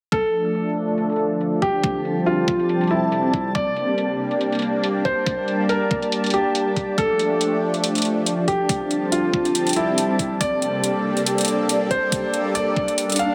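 Heavy and aggressive, this short cut from a longer heavy wobble dubstep track moves at 140 BPM in 4/4 with a half-time feel and a 55% swing on the sixteenths. A polished grand piano sits up front carrying the melody between E4 and F5, its notes trailed by delay. Beneath it, a lush, detuned supersaw pad holds sustained chords with a slow attack and long release, pumping against the sidechain while a low-pass filter sweeps across it and a moving notch keeps it evolving. From 1.0 seconds a cloudy, blurred granular pad of mellow sine tones adds texture with its own built-in reverb and sidechain pumping. The drums pair a knocking, tape-warm kick, high-passed and up front, with metallic, overdriven hi-hats under a low-pass filter, all set in a lush hall reverb as the chords cycle through Dm, Csus4 and Gmadd9. An electronic swell arrives at 13.1 seconds just before the cut.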